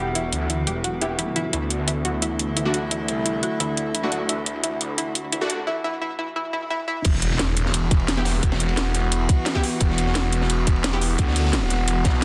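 Mechanical and aggressive, this 12-second cut from a longer dark technical drum and bass track runs at 174 BPM in straight 4/4, opening on an eerie metallic drone with chorus and reverb, a round chorused analog pluck arpeggio with delay, and a snarling, growling saw bass. Up-front electronic drums with a cracking snare and metallic hats push the build-up over Em and D, while a bold, punchy orchestra-hit-like stab moves through a filter sweep and a very quiet swell leads into the drop at 7.0 seconds. There the pluck stops, and a tight electronic kick and a gritty, saturated breakbeat kit sitting in the background join over an E5 chord, all pressed into a dense, heavily limited master.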